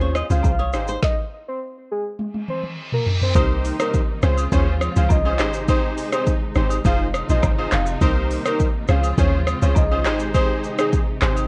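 A worn, warbling cassette-tape sound with pitch drift frames this breezy, joyful afrobeats excerpt at 103 BPM in Ab major, where a deep, round log drum bass and an overdriven electronic drum kit with a woody snare and metallic hats sit up front, detuned analog keys with chorus supply the accompaniment while a triangle-and-sawtooth synth lead with tape echo carries the tune, agogo bells and woodblock click in the background, a fingerpicked flamenco guitar riff sounds only until 1.0 seconds, a drum fill and reverse cymbal lead out of a stop, and a bowed studio string section with vibrato and portamento joins at 3.4 seconds over Cm7, Dbmaj7, Abmaj7 and Fm7 chords.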